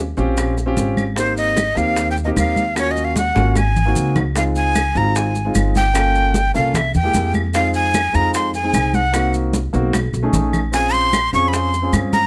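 Afro-Cuban jazz with a lively, danceable lift, heard in a short cut from a longer piece: a breathy, bright flute with vibrato and a crisp, chiffy attack carries the melody up front from 1.2 seconds, over a woody pizzicato upright bass and a dark, intimate grand piano whose action noise can be heard. Behind them sit damped, high-tuned congas played with soft hands, tight, saturated bongos and distant claves in a large room, joined by close, grainy maracas, with drum fills at 3.2 and 9.9 seconds. The harmony moves through rich extended chords, shifting to a new key centre at 4.4 seconds, all captured with close, detailed microphones and light reverb.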